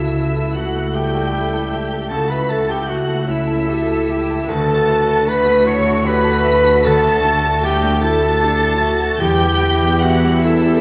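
Moving in a slow, rubato 6/8 at 51 dotted-quarter beats per minute, this tender, emotional film-score fragment in D major is cut from a longer piece and unfolds over roughly 10.8 seconds. A muted violin section carries the melody high in its range, its con sordino tone veiled and shaded with vibrato, while a second, lusher muted violin line, a bright solo clarinet and an airy, mellow concert flute with straight tone weave supporting lines in the background. A clear French horn section holds sustained chords with light vibrato, and a brilliant, intimate grand piano, its action noise audible, joins a very quiet, smooth-topped muted viola section in the accompaniment, while a ringing, fingerpicked concert harp plays arpeggios. Underneath, a muted cello section and a distant, soft-attacked double bass section supply the bass. The harmony moves from A/C# to Dsus2 at 4.5 seconds and on to Em at 9.2 seconds, all set in a wet scoring-stage reverb with a dark, warm production.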